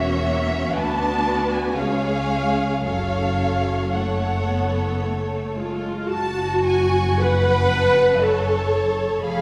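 From the first moment, a dark violin section sings an elegiac, portamento-laced melody high above a rich second violin line, an up-front, even viola accompaniment, expressive cellos and smooth double basses, shaping a solemn, rubato slow movement for string orchestra in 3/4 and F# minor at about 51-60 BPM, its lush vibrato bathed in the wet reverb of a church or concert hall in this brief passage cut from a longer piece.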